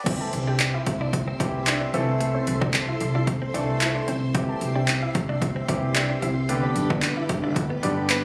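A vintage, organ-like string pad opens this summery, upbeat dance-pop excerpt in C major at 112 BPM, its soft-attack chords shimmering with ensemble chorus and sidechain pumping. Almost at once a clear, intimate grand piano with audible action noise, a punchy, overdriven analog drum machine with kick, handclaps, hi-hat and crash, and a clean, compressed electric guitar riff with analog chorus sitting in the background join in, followed by a soft, round, detuned pluck melody carrying chorus and tape echo. A woody, thumpy pizzicato upright bass enters at 0.3 seconds, pumping up front with the pad, piano and pluck over C, Am/C and G in what sounds like a club drop captured on a phone, with compression and a thinned low end.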